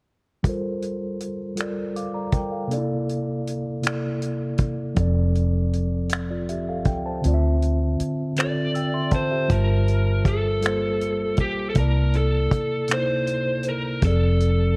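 A dark, warm studio sound with reverb frames this sultry, yearning slow six-eight R&B excerpt at 53 BPM in G dorian, where a mellow tine electric piano under a filter sweep and a dry soul drum kit with finger snaps, hi-hat and a punchy kick start at 0.4 seconds, a round, foam-muted electric bass enters at 5.0 seconds, and a lead guitar through a small cranked amp, overdriven with slapback echo, carries the melody from 8.4 seconds over Gm11, C13, F6 and Dm9 chords.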